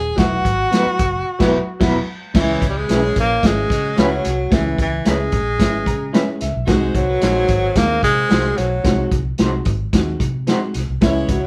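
A breathy, whispered tenor saxophone carries the melody up front in this driving, passionate slice of uptempo 1960s-style soul, its notes scooped and softly attacked with an intimate vibrato. Beneath it, a vintage drum kit with muffled, dark cymbals and a tight kick sits close in a lo-fi, small-room sound, while a foam-muted electric bass adds round, amped low end. A worn upright piano with audible action noise and a woody, slightly detuned tone provides the accompaniment, stepping forward with a fill from 5.6 to 6.7 seconds. An electric guitar through a small old amp adds twangy, slightly broken-up stabs with tremolo, and a loose jazz-style horn section with tube saturation plays a second line in the background beside a very quiet, ringing vibraphone. The whole band plays live in one room with moderate studio ambience, hitting a shared accent early on as the chords move from Esus2 to C#m7 and G#7 in this passage cut from a longer piece.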